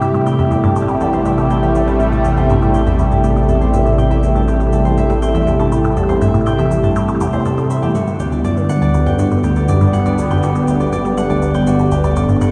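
A bright, detuned sawtooth pad sits up front with chorus, sustaining Am7 and then Gmaj7 from 8.0 seconds, over a squelchy, resonant blip-pluck riff with phaser and tape echo, a round, dark analog bass, and a fingerpicked concert harp and tape-echoed electronic cabasa and percussion blips that both fade in across the full 12.5 seconds, all of it bathed in huge stone-room reverb to give this fragment of sequencer-driven space music a mysterious, expansive air.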